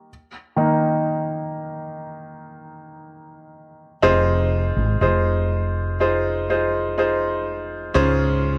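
Heartbroken and longing, this slow 61 BPM pop ballad fragment in F minor opens with a clear, intimate concert grand piano playing alone, its action noise audible up close, before a woody, growly fretless electric bass joins at 4.0 seconds beneath chords moving from Fm7 to Dbmaj7, the whole framed by a dark production and a lingering plate reverb.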